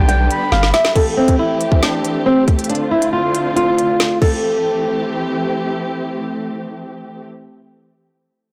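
Menacing and cold, this half-time drill hip hop cut in A minor at 138 BPM opens with a fingerpicked, finger-squeaking flamenco guitar melody up front through a low-pass filter and delay, a brief airy jazz flute in the background, lush, distant bowed strings holding sustained chords over G, Am7 and Dm7, a deep sine 808-style bass that stops at 0.7 s, and an electronic drill kit with a hard-clipped kick, woody soft-clipped snare, crisp hats and a drum fill at 0.5 s, all in a small room with light reverb and a blown-out, overdriven sound.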